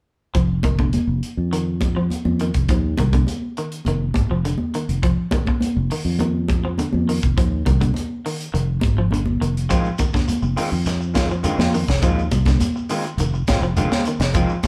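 A tight funk drum kit with a high-tuned snare, a round, dark fingered bass and a twangy, slightly broken-up electric guitar playing arpeggios open this funky, intense afrobeat excerpt at 103 BPM in F dorian, with thick-skinned congas joining at 0.6 seconds over a single Fm7 chord. The band plays live in one room with moderate studio reverb, the drums and bass sitting up front. At 9.7 seconds a second, darker guitar through a small old amp adds stabs with vibrato, and a grainy shekere enters alongside it.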